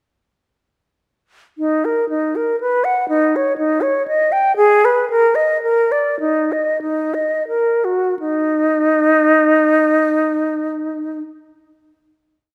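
A silver concert flute enters alone at 1.6 s, playing flowing broken-chord figuration in Eb minor in this short, complete baroque-style fantasia for unaccompanied flute. The mood is introspective, and the rubato phrasing in 3/4 moves at a tempo between 81 and 124 BPM, slowing down from 3.8 s to 8.2 s. The flute ranges from Eb4 to G5, and its tone is airy and metallic, with vibrato and soft attacks. Close-miked and up front, it sits in a moderate scoring-stage reverb, tuned to A4 = 439 Hz. After the opening section, the piece settles on a final note from 8.2 s, with the flute sounding until 11.2 s.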